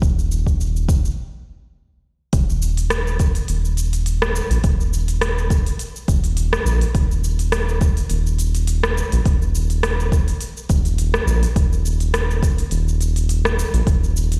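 A deep, up-front electronic kick anchors this mystical, earthy organic downtempo excerpt at 104 BPM in 4/4, its tape-warm thump re-recorded in a large room alongside an electronic kit of crisp hi-hats, rim clicks and shaker with a 16th-note swing. Beneath them, a round, dark analog bass blending sawtooth and sine sits up front with a fast attack and sustained notes, pumping against the sidechain. A brief stop at 1.2 s gives way to the groove at 2.3 s, and the whole excerpt sounds as if played through a big sound system in a bare stone room, with light reverb.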